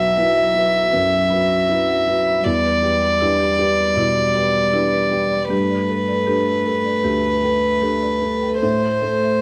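Reflective and melancholic, this short neoclassical fragment in E minor drifts at 78 BPM with a rubato feel, passing from Bsus4 through Em7 and Gadd9 to Am. A rich, floating violin carries the melody up front with a soft attack, bowed sul tasto and touched by slapback echo, while a warm cello traces a distant second line in the background. A felt-muted upright piano supplies intimate, mellow accompaniment with audible action noise, and a very quiet, buzzing marimba played with medium hard mallets adds woody, airy arpeggios, all set in light reverb.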